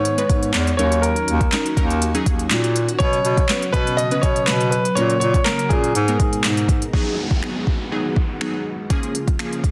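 A clear, intimate concert grand piano carries the melody from the start, over mellow, organ-like string chords pumping in the background and a roomy, classical-style bass clarinet bass line, in this bittersweet, confident dance-pop excerpt. An overdriven smooth R&B drum kit with finger snaps, handclaps, soft kick, sharp snare and crisp hi-hat sits up front, while glassy, detuned digital keys with chorus and a filter sweep add accompaniment. The piano stops at 6.4 seconds and the bass clarinet at 6.8 seconds, and an electronic downlifter enters at 6.9 seconds, all within a dense, heavily limited master with light reverb.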